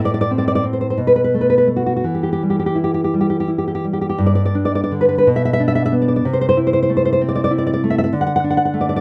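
Swaying in a flexible, rubato 6/8, this intimate and melancholic romantic excerpt features a solo nylon-string guitar, dark and deep in classical tone, with fresh strings and a thumb-plucked touch placed up front. Close, detailed microphones and light reverb keep every note near, and at 4.2 s the harmony settles into a new section before the passage closes at 9.0 s.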